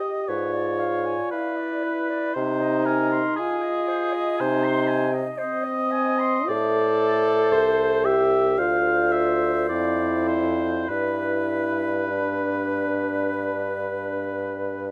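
A slow, lyrical romantic movement for wind quintet opens with flute, oboe, French horn and clarinet together, a mellow bassoon bass joining at 0.3 seconds beneath a rubato 4/4 pulse. The oboe sings its second line up front with light vibrato and a warm tone, while the wooden baroque flute carries the melody in the background with an airy, hollow, straight tone and crisp attack. The smooth-topped horn and a distant, roomy clarinet fill in the accompaniment over chords moving from Abdim7 through Ab/C, Am and Dm7 to G, all captured closely with light reverb in this fragment of a longer piece.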